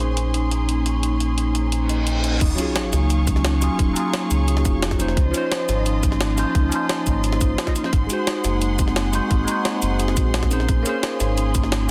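Dreamy and soulful, this liquid drum and bass fragment opens on a bell-like tine electric piano through phaser and dub echo, distant, lush bowed strings pumping under sidechain, and mellow soft-mallet vibraphone arpeggios with tape echo and a filter sweep, all over a deep sine sub bass and a gritty, pitched-up jungle sampler kit with a high-tuned snare, until a reverse cymbal and sub drop from 1.8 s lead into the drop at 2.4 s, where a tight, layered electronic kick joins the dense, heavily limited mix.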